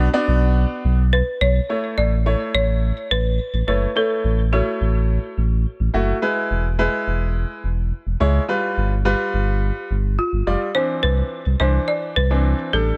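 A woody, hard-mallet folk marimba carries the melody with tape echo, dropping out at 5.3 seconds and returning at 10.2, over a bright, brilliant concert grand piano accompaniment and a deep, full sine sub bass in this confident, driving dance-pop excerpt, moving from Bm through A, E and G7 to Cadd9 in a small, lightly reverberant room.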